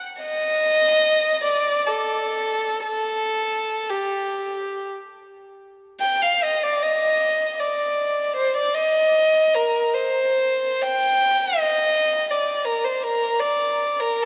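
Classical and meditative, this mournful excerpt for a single unaccompanied violin drifts in a free, rubato 3/4 between 44 and 84 BPM, the rich, intimate bowed line spanning G4 to G5 from 0.2 to 14.3 s with light vibrato, soft attacks and an airy sul tasto tone, heard close and up front inside a church reverb that lingers for 3.5 seconds as its opening idea returns at 6.0 seconds.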